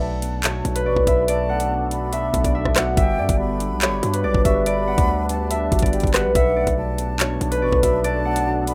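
A fingerpicked concert harp carries the melody up front, its acoustic strings ringing through a delay and setting an ominous, menacing tone for this half-time drill cut from a longer piece. Above it, a breathy flute traces a second line with vibrato, tongued notes and lifted highs, its expressive phrases also trailed by delay. A mellow, clean tine electric piano supplies accompaniment as though heard through built-in speakers, while a deep, dark ambient pad enters at 0.5 s, holding slow-attack sustained chords with chorus and its own reverb in the background. Underneath, a punchy, heavy 808-style bass with a fast attack and a noise layer decays beneath an electronic drill kit that arrives at 0.2 s, pushing a knocking kick, metallic hats, handclaps and rim clicks forward in the mix. The harmony moves from Bm7 to Gmaj7 and back, and the rough home demo mix stays mostly dry.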